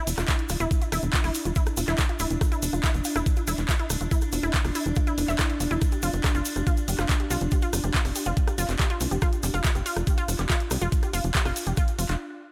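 Psychedelic and driving, this psychedelic trance excerpt runs at 141 BPM in 4/4, with an overdriven, knocking electronic kick up front beside a tight, punchy sequencer bass of sawtooth and square tones with ring modulation and a filter pluck. A lush, detuned unison pluck riff with wave-folding, tape echo and sidechain pumping plays over an evolving, morphing wavetable pad holding sustained chords from Dsus2 to F5 in the background, the pad chorused and pumping too. Electronic dance drums add handclaps, hi-hat and rim clicks, a grainy, distant egg shaker sits in a large room, and the kick drops out at 11.9 seconds just before the remaining parts stop together at 12.2 seconds.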